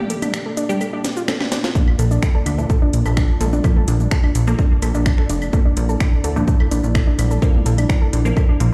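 A straight, driving 4/4 pulse sets this hypnotic melodic techno excerpt in motion, opening on a break where a house drum kit of claves, finger snaps, metallic hats, shaker, cracking snare and toms plays a fill before a punchy, tape-warm electronic kick and a funky, sawtooth-edged analog bass enter up front around 1.8 to 2.0 seconds, joined throughout by a soft, warbling pluck arpeggio with chorus and dub echo, muted phaser-swept dub chord stabs, and a moody, detuned analog pad with vintage sampler grit sitting in the background, the pad, stabs, pluck and bass all pumping with sidechain as the chords move from Gm to Bb inside a large, bare-room reverb.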